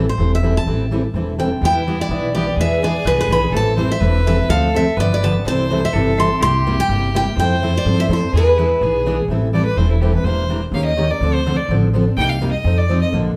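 A picked steel-string acoustic guitar carries the fiery melody in its high register from the opening until 9.2 seconds, riding a fast, swinging acoustic string swing groove in the jazz manouche style. Two more picked acoustic guitars provide the accompaniment through a minor-key progression rich in sevenths; among the three guitars, one is a bright, full-bodied dreadnought placed up front, another a warm jumbo, and the third a boxy concert model with fresh strings. An upright bass, woody, thumpy and up front, anchors the low end with pizzicato notes. A clear, earthy violin with light vibrato enters at 1.6 seconds as a bowed second line, then takes a solo from 9.3 seconds to the end of this excerpt. The whole band sits in a club reverb that places the listener further back in the room.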